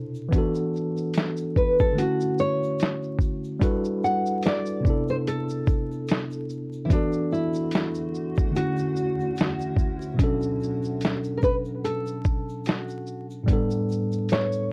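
A lightly swung, compressed sampler-style drum kit, muffled and pitched down, with a thumpy kick and medium-tuned snare sets a hazy, reflective lo-fi hip hop groove, with a grainy egg shaker tucked in the background. A worn, slightly out-of-tune tine electric piano carries the chords from the start, and a full-bodied, fingerpicked nylon-string guitar takes the melody from 1.6 seconds, both up front and softened by filtering. A cloudy granular pad drifts in from 7.6 to 10.2 seconds, while the whole fragment sits in light reverb with vinyl crackle and the warbly pitch drift of old cassette tape.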